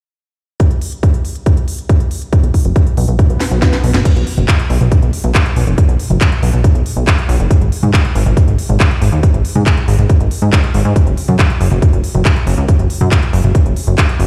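A straight, driving groove in 4/4 carries this euphoric, uplifting trance passage, cut from a longer piece. A punchy, layered electronic kick sits up front from 0.6 seconds, alongside a produced house kit of crash cymbal, handclaps, crisp hi-hats, a cracking snare and toms. At 2.4 seconds a funky analog bass arrives, blending sawtooth, pulse and triangle waves with ring modulation and a fast-attack filter pluck that decays, pumping with sidechain in the low register. A background electronic swell and a drum fill lead into the next section at 4.1 seconds, where the groove carries on. The sound is big and reverberant, as if played through a large sound system in a bare room with a generous studio reverb.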